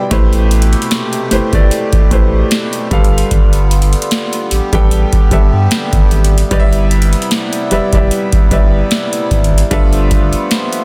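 Smooth and tender, this short contemporary R&B cut at 75 BPM in lightly swung 4/4 sets a clear, natural concert grand piano and a reedy, sweet accordion with light tremolo tuning over a round sine sub bass and a booming analog drum machine, its deep kick, crisp snare and metallic hats up front in a large room, moving through Am9, G7, Cmaj7 and G13 under digital ambience and a dense, heavily limited modern master.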